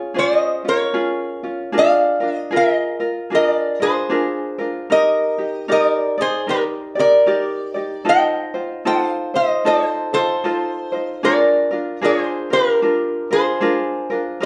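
A lap resonator guitar and a tenor ukulele begin together in this relaxed, sunny Hawaiian piece at 76 BPM, with a gentle swing on the eighth notes in 4/4. The resonator guitar carries the melody up front with a metallic, nasal slide tone played with fingerpicks, while the fingerpicked ukulele adds a light accompaniment over chords such as Dbmaj7, Ebmaj7 and F7. The two play live in one room with a wet, large studio reverb, and the passage is cut from a longer piece at 14.5 seconds.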